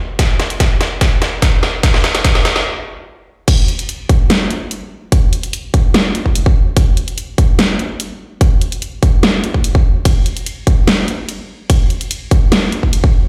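A punchy, layered electronic kick drum sits up front in this menacing, chaotic dubstep passage, cut from a longer piece and running at 146 BPM in 4/4 with a half-time feel. Beside it, a produced dubstep drum kit of crash, hi-hat, ride and a huge snare enters at 0.2 seconds, with high-pass filtering shaping its hats, snare, cymbals and room sound. The opening build-up is driven by a drum fill that gives way to a stop at 2.7 seconds. The drop then lands at 3.5 seconds and carries on to the end. Both drum parts were re-recorded in a small room, while the overall mix sounds as though it is played on a big sound system in a bare space, with a light touch of large studio reverb.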